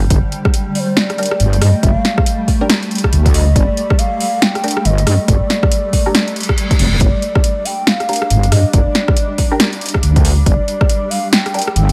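A swung, half-time deep dubstep groove in 4/4 drives this heavy, dark excerpt, with an overdriven electronic kick and an up-front drum kit of punchy snare, rim click and metallic hi-hats beneath a saturated, detuned sawtooth wobble bass with chorus, while a cloudy, evolving granular pad glows in its own reverb, a breathy, close-miked low ney with vibrato and dub echo sings from 0.8 s, a muted filtered dub chord stab with phaser, analog chorus and cassette tape sits in the background, and a reverse cymbal appears at 6.3 s.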